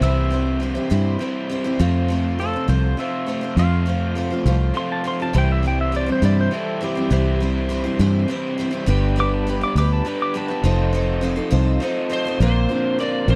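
A rolling 6/8 lilt carries this nostalgic stretch of folk rock and heartland rock, cut from a longer piece and captured in a dry, close 1970s-style studio sound with light reverb. A twangy, compressed pedal steel takes the spotlight from the start, played clean with fingerpicks and slide and colored by volume swells, until it drops out at 11.5 seconds. Beneath it, a bright, shimmering twelve-string acoustic with octave-doubled strings and audible finger squeak picks out the accompaniment, while a double-tracked crunchy overdriven guitar plays a riff. The round, dark fingered bass sits up front with a foam-muted, amped tone, and a very quiet tonewheel organ holds clean sustained chords with key click and a stopped rotary speaker. The harmony moves through C, F and G to F7, and an up-front overdriven slide guitar, played with fingerpicks, enters with a short warm melody at 12.1 seconds, just before the harmony lands on a Bbadd9.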